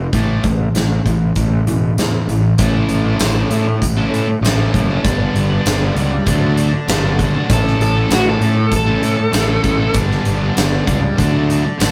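A straight 4/4 groove at 98 BPM drives this confident classic rock excerpt in A mixolydian, cut from a longer piece. A huge arena drum kit sits up front with a fat snare and punchy kick, hi-hat and tambourine, sounding big and roomy, while a fuzz-soaked fingered electric bass, punchy and direct, sits up front beside it. Two overdriven, picked electric guitars carry the riff throughout: a bright, cranked stack tone and a sludgy, warm one tucked into the background. After a brief opening on an A5 power chord, the progression moves through A, G and D from 2.6 seconds, and a dark, distorted fuzz lead guitar steps forward with a short second line between 7.5 and 9.9 seconds. The rough rehearsal-room recording carries a moderate small-room reverb that gives the whole band a raw, in-the-room feel.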